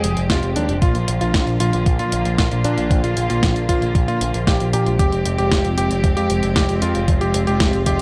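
Italo disco at 115 BPM in F dorian, danceable and bittersweet, this section of a longer piece moves between Fmadd9 and Bb as a clear, vintage electric grand piano carries the melody through delay over smooth, bowed string-section chords, dark chorused synth-brass stabs set in the background, and a punchy picked bass with an envelope filter, while a tape-warm 12-bit drum machine plays hi-hat and a medium-tuned snare and a thumpy, sampler-style electronic kick joins at 0.3 s, with light reverb around the mix.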